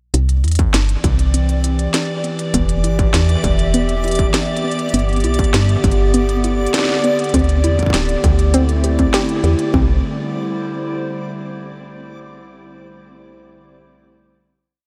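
Intricate and playful, this IDM piece sets a distorted electronic kick and a glitched, ever-changing kit of crisp hats and a woody snare against a round, dark, skipping FM bass line. A nostalgic, warbling tape-like pad with sidechain pumping holds slowly shifting chords, a nasal, lo-fi pluck repeats a filter-swept arpeggio in the background, and a reversed, swelling texture sustains a bright high note. The dreamy mix is steeped in huge ambient reverb and a faint mains hum until the final chord arrives at 9.7 seconds, and the pad rings on by itself from 10.0 to 12.1 seconds.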